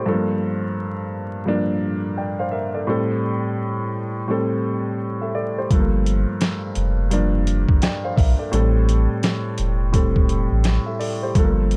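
A lazy 4/4 groove with a gentle swing on the sixteenths sets a reflective, moody boom-bap hip-hop feel in this short cut from a longer piece. A dark baby grand piano opens alone, sitting close and intimate with audible action noise, its vintage tone narrowed by cassette-tape coloring and filtering at both ends as it alternates between Gm9 and Am7. At 5.7 seconds a round, deep sub bass with a sine-like, sustained tone arrives together with a sampler-style drum kit of kick, snare and hi-hat. The drums are gritty, compressed and pitched down, with a thumpy kick and a medium-tuned snare placed up front beside the piano. A bed of vinyl crackle and very little reverb keep the sound dry and close, and all three parts carry on to the end at 11.8 seconds.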